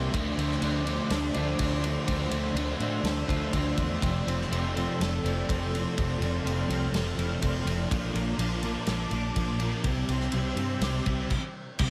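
Hazy and blissful, this short shoegaze and dream pop cut from a longer piece layers a thick, dark fuzz guitar riff up front over a round, foam-muted bass and a loose, small-room indie drum kit with dark cymbals, while an overdriven semi-hollow guitar riff with reverse reverb and bright twangy twelve-string arpeggios through chorus and analog delay sit in the background, joined by an airy, breathy pad of sustained chords, moving from Dm7 through Fmaj7 and Bbmaj7 to C before a brief stop at 11.3 seconds.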